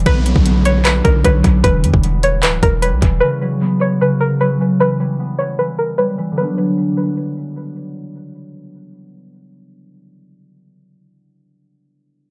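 Hip hop trap at 152 BPM in a half-time feel, this brooding, eerie excerpt in B harmonic minor moves through Bm, Em and F#sus4. A twangy, string-like resonator pluck carries the melody through chorus, low-pass filtering and analog delay, while a fingerpicked concert harp rings underneath until 11.0 s. A boomy 808-style bass and a trap kit with a hard-clipped kick, metallic hats and handclaps hit up front, with a downlifter in the background, before bass and drums stop near 3.2 s, leaving an echo-heavy mix with light reverb.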